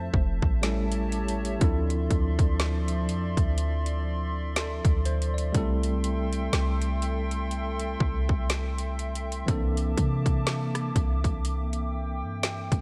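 A trap drum kit with a hard-clipped kick, woody snare, metallic hats, rim clicks and vintage 12-bit sampler grit sits up front from 0.1 s beside a deep, boomy, sine-toned 808-style bass, while a clean tine electric piano heard as if through built-in speakers and a soft, hollow, flute-like, detuned pad with chorus drift through Fmaj7, A7, Dm9, Am7/C and C13, giving this smooth, romantic contemporary R&B passage with a swung 16th-note feel a digital ambience.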